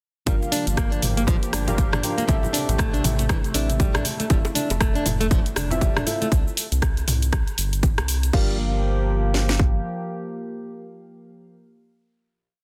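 A swung four-on-the-floor afro house groove drives this spiritual, hypnotic piece: the punchy kick and cracking snare sit up front, while programmed hi-hats, shaker, rim clicks, low toms and a crash sit behind them, along with distant low-tuned congas, and tight, dry bongos briefly join midway. A round, dark analog bass plays a dotted line beneath a fingerpicked nylon-string guitar step sequence with digital delay, soft chorused chord stabs push syncopated accents, and a smooth, warbling vintage pad holds sustained chords, with the pad, guitar, stabs and bass all pumping to the sidechain. From 8.3 seconds the piece settles onto a final chord, the pad and stabs lingering to about 11.5 seconds in light reverb on a dense, heavily limited master.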